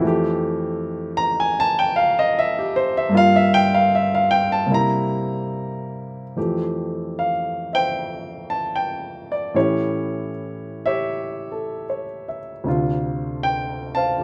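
A warm grand piano sits up front and plays alone in this short solo jazz passage, its lines reaching from the low bass register up into the upper treble. The feel is a sophisticated swing that bends freely in rubato, moving through rich chords such as Fmaj9, Gm7 and C7 before returning to Fmaj9 at 6.4 seconds and turning toward A7 and Dm7. A light reverb gives the room a gentle sense of space.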